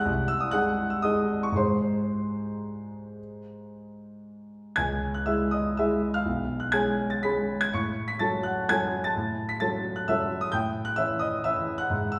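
A clear concert grand piano opens alone on a G#/B# chord, beginning an elegant, nostalgic classical waltz in C# minor and 3/4, played with rubato at a tempo ranging from 110 to 139 BPM. The piano has an open, up-front tone with deep bass and short sustain, spanning B1 to C#7 as the harmony moves through C#m, C#7/B and F#m/A before settling on A7 at 10.5 seconds. A wet recital hall reverb places the listener further back in the room, and this 12.2-second cut is taken from a longer piece.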